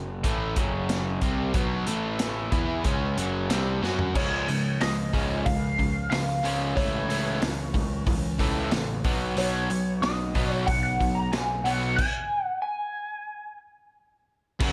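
A twangy, compressed lead guitar with wah enters at 4.2 s, carrying the melody over this sunny, swaggering classic rock excerpt at 92 BPM in a straight 4/4. Beneath it, a bright, crunchy overdriven guitar and a hollow-body overdriven semi-hollow guitar, both picked, play the riff alongside a round, fuzzed-out bass. A punchy vintage drum kit with dark cymbals and a pumping room sound sits up front and plays a fill from 3.8 s. Light reverb surrounds the band as the harmony moves through C#add9, A/C# and Badd9 before a stop at 12.0 s.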